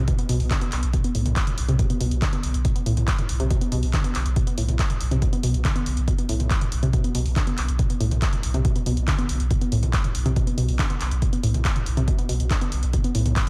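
A deep, round sine sub bass opens this dark, relentless peak-time techno excerpt, overdriven, low-pass filtered and pumping against the sidechain, joined at once by a punchy electronic kick re-recorded in a small room. A warbling, lo-fi pluck riff of detuned triangle and sawtooth with a noise layer and filter sweep runs through chorus and tape echo, pumping as well, while an analog drum machine adds handclaps, hi-hat and toms. Light reverb and digital ambience surround the driving groove throughout its 13.5 seconds.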